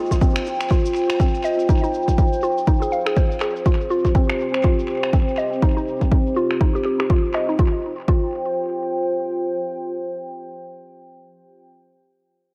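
Earthy and driving, this afro house excerpt at 122 BPM swings its 16ths over a punchy, up-front electronic kick, soft layered shaker and finger snaps with tape echo, a woody, warbling mallet-like synth pluck arpeggiating through chorus, analog delay and a filter sweep until 8.2 seconds, and a deep, moody, detuned sawtooth pad sustaining chords with phaser and sidechain pumping to the end, all set in an echo-heavy mix with plate reverb.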